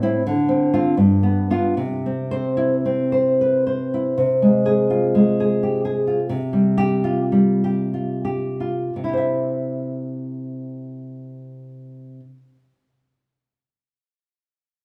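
A thumb-plucked nylon-string guitar sits up front with a warm, classical acoustic tone, carrying this romantic solo piece in C major on its own. The mood is warm and sunny, moving in 3/4 with a free rubato feel somewhere between 56 and 90 BPM, and the playing ranges from G2 up to E5. The harmony opens with Dm7 and G7 settling onto C, then darkens briefly to Fm/C before passing through Csus4 and coming home to C. The pace slows from 3.0 to 8.9 seconds, and the guitar rings out until 12.4 seconds. A wet, large studio reverb surrounds the performance, which was captured live in one room and is cut from a longer piece.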